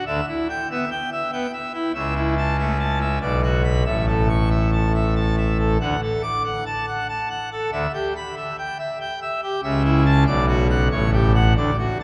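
Bathed in a cathedral's long, wet reverb, this short cut from a longer classical organ toccata in 3/4 features a solo pipe organ on full registration with bright mixtures, sitting up front in a romantic voicing that spans A1 to D6, its majestic, jubilant chords moving from Em7/D through A/C#, Bm and D before settling on A6.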